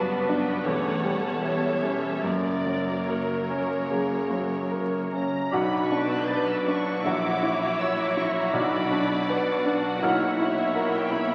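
A clear, up-front grand piano carries the melody in this passionate, tragic excerpt of a romantic movement for piano and orchestra in B minor, moving with rubato at around 71-85 BPM over lush, vibrato-rich violins, a warm viola section in the background, and very quiet cellos and double basses, with a mellow French horn section holding chords from 0.6 s. At 5.5 s the harmony settles onto Bm as woodwind lines join: an airy flute section, a close-miked cor anglais, a dark clarinet and a clear bassoon, while soft-mallet timpani on calf heads are barely audible around 8.5 s. The whole sounds like a very old 78 rpm record, with vinyl crackle and the wet reverb of a scoring stage.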